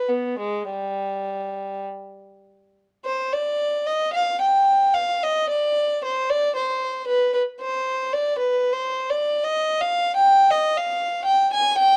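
Classical baroque-style suite movement for a lone bowed violin in triple time, flowing and solemn with a free rubato feel, its reedy gut-string tone played in period style up front in a dark production with light reverb, moving into a new section at 3.0 s in this short passage cut from a longer piece.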